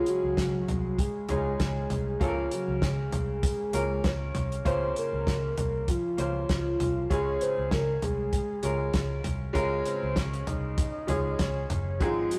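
Piano-driven pop at 98 BPM in 4/4 with a light sixteenth-note swing, this anthemic, uplifting excerpt sits in Db major, tuned slightly below standard pitch, and moves from Db to Bbm at 2.2 seconds before returning to Db at 7.1 seconds. A bright upright piano carries the accompaniment up front with a brilliant, woody, polished tone, while a soft octave-layered synth lead sings the melody with a full-bodied, triangle-and-sine character, a sub octave, fast attack, long sustain, vibrato, and chorus and phaser colouring. The damped 70s drum kit sits forward in the mix, dry and acoustic, with a fat snare, tight kick, hi-hat and toms under a rolled-off top. A vintage muted picked electric bass enters at 0.2 seconds, dark and round with a foam-muted, amped sound. The whole take has a rough rehearsal-room feel, with tube saturation and a moderate stone room reverb around the players.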